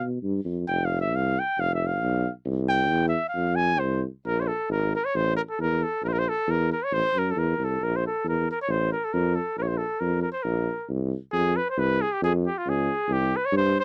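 A warm trumpet with a soft attack opens this bittersweet, virtuosic Balkan folk piece in 2/4, carrying a classical-style solo over the first 4.2 seconds while a clear, vintage-toned tuba holds down the low end from the start. The two brass voices sit up front in a dry, close 1970s-style studio sound with little reverb, moving through a shift in harmony at 4.2 seconds and a new passage from 11.3 seconds. It is cut from a longer piece, and the melody and bass run over a straight pulse throughout.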